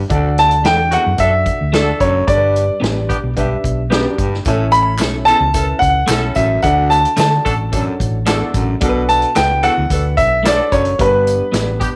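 A clear, up-front baby grand piano carries the melody with a slapback echo over this joyful, uptempo 1960s-style soul excerpt at 110 BPM in 4/4, moving through D, G, A and Bm7. Beneath it, a round hollow-body bass, a dark, woody upright piano, a punchy vintage drum kit, a breathy subtoned baritone saxophone riff, slightly broken-up guitar stabs with tremolo and a tight horn section with light vibrato fill out the groove. Tambourine and handclaps join in the background at 4.4 seconds, all set in light reverb and studio ambience.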